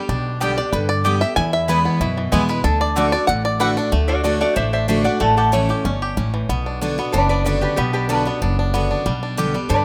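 Bluegrass at a brisk 187 BPM in D major, rustic and lively, this fragment of a longer piece opens on a twangy, fingerpicked five-string banjo solo while a nasal, metallic lap resonator guitar plays a second line; underneath, a full-bodied picked acoustic guitar with audible finger squeak accompanies a growly, thumpy upright bass that sits up front, woody mandolin stabs appear from 0.4 to 3.7 seconds, and at 3.9 seconds the slide resonator takes over the solo, the whole performance heard in a rough home demo mix with light studio reverb.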